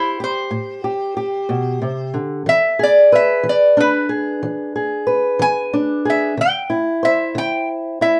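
Mournful and soulful, this short passage of acoustic country blues, cut from a longer piece, moves at a slow 61 BPM in a straight 12/8 in A minor, with a metallic, nasal lap resonator guitar played with fingerpicks and a steel bar carrying the slide melody up front over a dark, boxy fingerpicked old ladder-braced acoustic guitar as it moves from Am9 to E7 to Dsus2, all set in light reverb.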